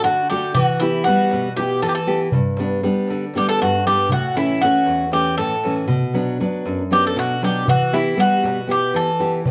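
Greek folk in a joyful, uplifting 7/8 at 236 BPM in eighths: a metallic, double-strung bouzouki picks the melody up front, a fingerpicked classical nylon-string guitar accompanies beside it, and a small, high clay darbuka with natural skin sits in the background as the band plays live in a moderate studio room through D, Em, G, A, Bm and back to Em in this short cut from a longer piece.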